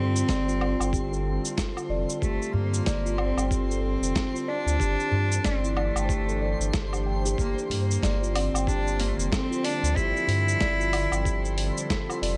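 A rich, reedy cello carries the melody up front in this meditative organic downtempo excerpt, its close, bowed gut-string tone trailed by tape echo. Beneath it, a deep, round sine sub bass and a breathy, detuned pad with chorus and sidechain pumping sit in a slow 93 BPM groove with a swung sixteenth-note feel. A steel tongue drum struck with soft rubber mallets plays ringing, pure arpeggios through tape echo, while a twinkling granular texture adds an octave-up shimmer with built-in reverb in the background. The gritty, tape-warm soul drum kit of hi-hat, shaker, snare and woodblock enters at 0.2 seconds, followed at 0.3 seconds by a thumpy compressed electronic kick, and a small, very quiet udu joins from 2.5 to 10.4 seconds. The harmony moves from a rootless Bbmaj9/G through Am7/G and Gm7 before returning to Bbmaj9/G, all set in a digital ambience.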